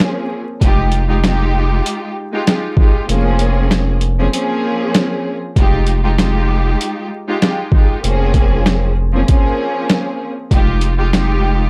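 Opening on distant, lush bowed strings filtered into a smooth ensemble bed alongside a compressed, pitched-down sampler drum kit with a thumpy kick, this reflective yet tough boom-bap hip-hop cut at 97 BPM in F minor swings its 16ths while a deep, round analog bass enters at 0.6 seconds under the shifting Bbm9/F and Fm9 chords, the kick dropping out from 3.1 to 5.6 seconds, all captured as a dry, gritty hardware recording with vinyl crackle.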